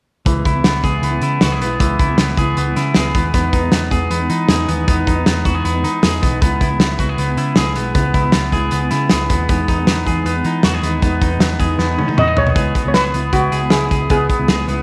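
A punchy, up-front loose indie drum kit with a rolled-off top drives this breezy, bright jangly indie pop excerpt at 156 BPM, alongside a dark, round, foam-muted vintage electric bass, clean picked electric guitar arpeggios carrying spring reverb and tape echo, and a full-bodied fingerpicked jumbo steel-string acoustic with audible finger squeak, all moving between C#m7 and Emaj7 in a small room with moderate echo chamber reverb, until a drum fill at 11.8 s leads to a shimmering, metallic steel pan melody struck with hard rubber sticks at 12.2 s.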